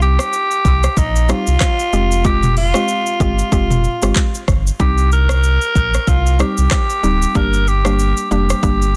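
A raspy, gritty tenor saxophone carries the solo melody up front with digital delay across this mellow, smooth afrobeats excerpt, over a woody, chorused FM synth pluck, a deep sine-and-triangle sub bass with octave, and a produced electronic afro-pop kit of deep kick, metallic hi-hat, handclaps, rim clicks, shaker and toms swinging on the 16ths, all moving through Cm, Fmadd9 and Gm in a dry, dense, heavily limited modern mix.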